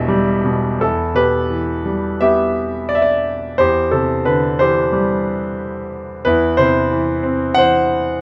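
Worn, warbling old cassette tape with drifting pitch and a light reverb colors this brief, brooding classical fragment, cut from a longer piece, for solo piano in E minor. A clear concert grand sits up front with a deep, polished bass and short sustain, playing lyrically with rubato around 80-92 BPM in 4/4 and ranging from E1 to F#5 across its 8.2 seconds. The moody harmony moves from Em to Cadd9/E at 3.6 seconds and settles on Cmaj7#11/E at 6.3 seconds.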